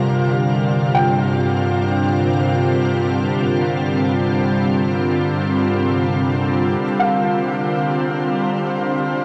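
Ambient in free time and tuned to A4 = 444 Hz, this melancholic, spacious excerpt is led by a pure, detuned organ-like pad holding sustained chords up front with ensemble chorus, over a muted felt upright piano's intimate high arpeggios with tape echo, an earthy bowed cello section carrying the bass with light vibrato, a calm sine-toned drone on C3 that stops at 6.9 s, and a very quiet, glassy glass harmonica beating ethereally beneath. All of it is soaked in a wet shimmer reverb within a dark, warm production as the harmony moves from Bb69/G to C7sus2 at 6.8 s.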